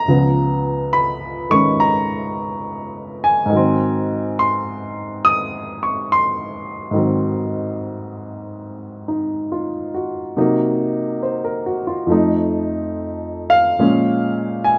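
Solo jazz with a swinging, playful mood, carried entirely by an upright piano whose woody tone sits up front in a light reverb across a range from Db2 to Eb6. The swung eighth notes move through a dominant-flavored progression, starting on Db7 and settling on Ab7 at 3.5 seconds before turning through Cm7b5 and F7 toward Bbm7 near the close of this 14.8-second cut from a longer piece.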